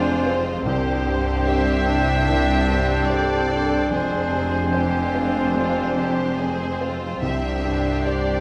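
All parts sound together from the start in this moving, tender orchestral film-score excerpt, which unfolds with a rubato feel over a brief passage that shifts between F minor and C suspended chords. A lush violin section carries the melody with smooth, even vibrato, while a second, more distant violin section, a clear solo oboe with a soft attack, a background clarinet and a pure, hollow silver flute with straight tone play supporting lines alongside it. A felt-muted upright piano sits mellow and intimate in the background, joined by a very quiet viola section and a French horn section holding sustained chords. Cellos with a focused, close sound and a section of double basses with light vibrato anchor the low end. Scoring-stage reverb bathes the ensemble in a roomy, cinematic space, and the passage runs just 8.4 seconds, cut from a longer piece.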